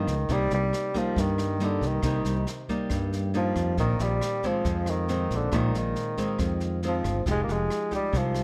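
Breezy and relaxed, this short bossa nova excerpt at 138 BPM sets a clear, up-front solo bassoon with light vibrato and a soft attack, in classical style and touched by plate reverb, over a small, fingerpicked nylon-string guitar, a bright, growly fingered electric bass and an airy, polished brush kit with boomy kick, rim click and snare entering at 0.1 s, moving through Cm7, Bb9sus4 and Fm9 in a dark, warm production with light reverb.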